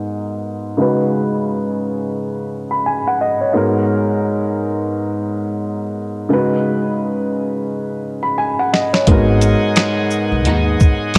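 A dark, worn baby grand piano opens this tough boom-bap hip-hop excerpt in G# minor, its mellow chords carrying audible action noise under a filter sweep as it moves between G#m7 and C#7sus4 at 87 BPM with a 16th-note swing. At 8.7 seconds a muffled, pitched-down sampler-style drum kit arrives up front, with a thumpy kick, a medium-tuned snare, rim clicks, hi-hat and shaker, and a drum fill leads into the next section. From 9.1 seconds a woody, growly pizzicato upright bass joins the piano, while a reedy tonewheel organ with key click holds sustained chords through a slow rotary speaker. At 10.5 seconds a lush, distant bowed string section adds a brief stab through digital delay, sitting in the background. The whole mix is dreamy and soaked in plate reverb, and the piece is cut from a longer work.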